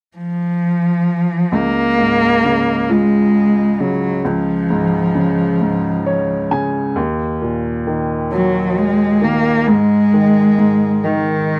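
A bowed, nasal single cello carries the melody from 0.2 seconds, its vibrato singing up front with a short slapback echo, in this heartfelt, romantic pop ballad in Db major, taken from a longer piece and moving slowly in 6/8 at 44 BPM. A clear, woody upright piano joins at 1.5 seconds with long-sustaining accompaniment, adding a fill from 5.6 to 7.0 seconds that leads into the harmony's shift from Db to Ebm. The sound is a dry, close, 1970s-style studio recording with a modest booth ambience.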